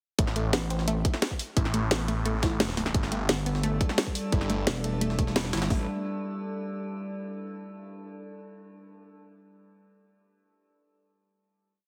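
A tight, up-front electronic kick with bright hats drives this tense, futuristic piece of dark technical drum and bass, layered with a cracking snare kit and a very quiet, gritty, pitched-up looped breakbeat. A swirling, saturated phased saw bass plays chopped phrases throughout, a growling FM bass cuts in at 0.5 seconds and returns at 3.3 seconds, and a punchy detuned pluck repeats a 16-step arpeggio sequence with tape echo in the background. An eerie, metallic, warbling drone with chorus enters at 3.5 seconds over a G6 chord, and the mix sits in a lush hall reverb with a heavily compressed, radio-like sound.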